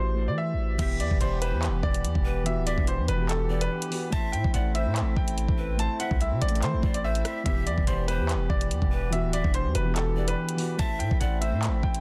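A menacing, cold drill piece opens on a brilliant, woody upright piano melody with delay, warbling lo-fi synth keys thickened by chorus, and a heavy, distorted 808-style bass up front, before a half-time drill kit with a knocking kick, handclaps, rim clicks, crash cymbal and bright hi-hats arrives at 0.8 seconds alongside reedy harmonium chords and breathy cane pan pipes with vibrato and delay in the background, inside a dense, heavily limited modern master.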